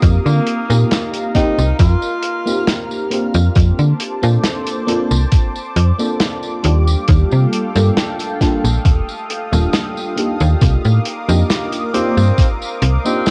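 Woozy and hazy, this vaporwave excerpt drifts at 68 BPM in a straight 4/4, moving through F7sus4, Bbmaj9/F, Ebmaj9#11 and Cm11 in a small room with a home-cassette grain. A dreamy FM electric piano with a soft pad layer, treated with phaser, subtle chorus and tape echo, sits beneath a thick, detuned unison pad carrying bright sustained chords. An up-front, snappy slap-like FM bass and a thumpy electronic kick anchor a warm soul kit of hi-hat, snare and tambourine. A clear alto saxophone with vibrato and tape echo appears briefly at 0.3 seconds and returns at 11.9 seconds.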